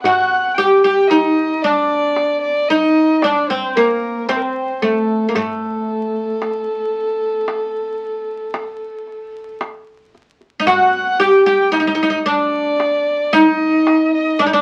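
Through the crackle of a very old 78 rpm record and a moderate club reverb, this soulful, longing Arabic maqam ensemble excerpt in 10/8 sets a bright, woody, plectrum-plucked fretless oud up front on the melody, joined by a dark, softly bowed sul tasto violin with light vibrato on a second line, while a clay-shell darbuka with natural skin is struck by hard hands, close and dry.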